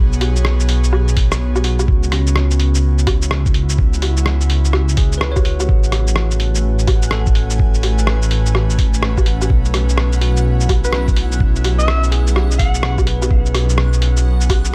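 Wistful and ghostly, this future garage excerpt swings lazily in 4/4 over vinyl crackle, with an airy, breathy pad carrying sustained chords through a grainy sampler grit and sidechain pumping, while a deep, rumbling detuned saw bass sits up front. Muffled, pitched-down lo-fi drums of hi-hat, rim click, shaker and woodblock start almost at once, joined by a thumpy, tape-warm kick at 1.2 seconds, and a bell-like tine electric piano with tape echo glimmers in the background alongside a reversed, swelling granular texture. Late on, a dark, distant alto saxophone plays a brief jazz-style solo with scooped subtone notes from 10.8 seconds.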